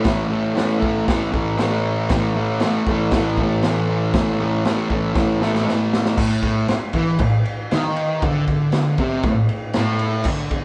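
A double-tracked fuzz guitar leads this swaggering, raw garage rock excerpt, its picked, distorted riff sitting up front in a straight 4/4 groove. A gritty, saturated acoustic drum kit, with a punchy kick, medium-tuned snare and dark crash and ride cymbals, plays with a rolled-off top and a pumping room sound, breaking into a fill at 5.2 seconds before the music shifts to a new section at 6.2 seconds. The band sounds as if it is playing live in one room, bathed in a wet, large studio reverb.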